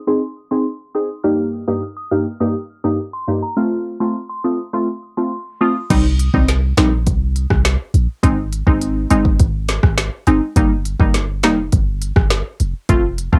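Dancehall with a hypnotic, bouncy feel, this passage opens on bright, detuned wavetable chord stabs pumping with sidechain while a glassy FM synth bell warbles through chorus and analog delay, all under a filter sweep. The bell stops at 5.7 s, and at 5.9 s a boomy, sine-like 808-style bass and an afro-pop drum kit enter, the kit bringing a deep kick, woody snare, rim clicks, crisp hats and crash, tape-softened and up front. The home cassette recording is dry and low-pass filtered.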